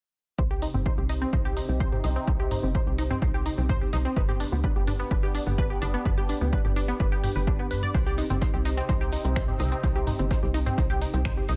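A punchy, tape-warm electronic kick drives this hypnotic melodic techno excerpt alongside a tight, ring-modulated sawtooth sequencer bass, detuned plucked synth arpeggios trailing dub echo, and an evolving, resonant pad of sustained chords that pumps with the sidechain over a Cm-G progression, while a house kit of finger snaps, hi-hat and toms ticks along, and at 7.9 s a very quiet, dark, cloth-damped acoustic kit with a fat snare enters together with a bright, jingly tambourine in the background of a small, echo-heavy room.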